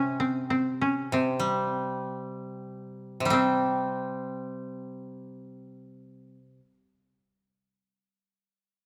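A koto carries the melody in this short, calm and austere fragment of Japanese chamber music, its mellow, woody tone sitting up front between C4 and G4. A second koto, brighter and plucked with fingerpicks like the first, supplies accompaniment lower down, from C3 to C4. Both instruments sound dry and close, set within a moderate scoring-stage reverb with a 1.9-second decay. The pace is slow and rubato in 4/4, moving between 52 and 69 BPM, and the opening phrase slows down over its first 3.3 seconds before a second section follows. Tuned to A4 = 438 Hz, the melody koto stops at 6.4 seconds and the accompaniment at 6.6, in a brief cut from a longer piece.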